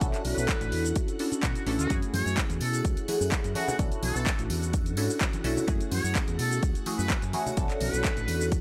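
A dry, gritty recording with transformer saturation carries this sensual, nostalgic filtered disco house cut at 127 BPM, where a punchy overdriven electronic kick sits up front beside a round, dark fingered electric bass, bright-hatted house drums with handclaps and shaker, and a funky, mellow sawtooth polysynth comp pumping with chorus, phaser and cassette-tape color over Bm11 and F#m9 chords, while a swirling vintage string machine hangs in the background, a distant, buzzy muted trumpet section with light vibrato carries the melody from 0.3 seconds, and congas and tambourine join softly at 1.9 seconds.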